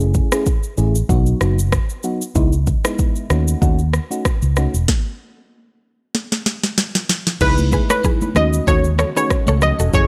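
A gently swung afrobeats groove in 4/4 sets a hypnotic, mellow mood. An up-front electronic drum kit with a deep kick and sharp snare joins a dark, round, punchy fingered bass and a soft FM electric piano coloured by chorus and phaser, until the band stops at 4.9 seconds and a drum fill arrives at 6.1. From 7.4 seconds a crystalline, detuned wavetable pluck carries the melody with chorus and tape echo, joined by background congas with thin skins, a clean picked electric guitar riff with tremolo and tape echo, and soon a very quiet, ethereal pad, all captured in a dry, gritty sound with transformer saturation.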